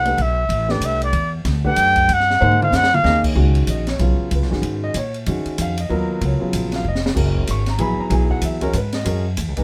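Modal jazz in a lilting 3/4 at 189 BPM, swung on the eighths, with a spiritual, hypnotic pull, heard as a short cut from a longer piece tuned slightly under concert pitch. A breathy, whispered trumpet opens up front with an intimate, close-miked solo line between D5 and G5, mellow with light vibrato and a soft attack, and it drops out at 3.3 seconds. Beneath it a grand piano comps through the whole passage with a natural, intimate tone where the action noise of the instrument can be heard, moving from D9sus4 and G#13 chords into Db13sus4 and Gb13sus4 as the harmony settles into Db mixolydian. The pizzicato upright bass sits up front, woody and warm on steel strings, holding the low end between F1 and Bb2. An acoustic drum kit in a small room, with dark cymbals, a high-tuned snare and a boomy kick, plays around the ensemble and adds fills near 2.4 and 6.8 seconds. Light reverb softens the whole ensemble.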